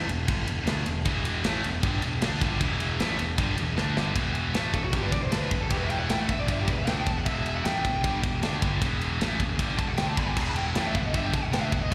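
Heavy metal with a relentless, dark mood, cut from a longer piece and set in straight 4/4 over an E minor chord. A heavy high-gain guitar opens the riff with distortion and slapback echo, sitting in the background alongside a growly, fuzz-laden picked electric bass that stays up front with overdrive. A tight metal drum kit with bright cymbals, a medium-tuned snare and a tight kick pushes forward, joined at 1.1 seconds by a second, scooped high-gain guitar playing the riff in the background. After a drum fill, a dark high-gain lead guitar takes a solo from 4.7 seconds, its distorted tone carried by slapback echo and digital delay. The whole band sounds like a live gig heard through a venue's PA, with recital hall reverb adding space.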